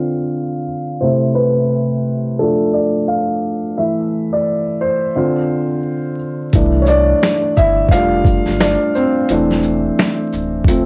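Lo-fi hip hop at 87 BPM in 4/4 with a swung sixteenth-note feel, this dreamy, cosy excerpt sits in C major and is cut from a longer piece. A felt-muted upright piano, soft, mellow and intimate, opens alone and carries the chords up front from the start, passing through Dm7, C6, F6 and Amadd11/E under a filter sweep that runs to 6.5 seconds, with a low-pass filter and cassette tape colour on its tone. At 6.5 seconds a lo-fi sampler-style drum kit enters with a thumpy kick, a medium-tuned snare, hi-hat, shaker and finger snaps, sounding compressed, pitched down and muffled, as if re-recorded in a small room onto tape. A deep, full sub bass with an octave arrives at the same moment, its sine-and-triangle tone sustained beneath the piano as the harmony settles onto C69, F69 and C69/E. The whole sits in a moderate reverb with the feel of a home cassette recording, touched by vinyl crackle and a low-pass filter.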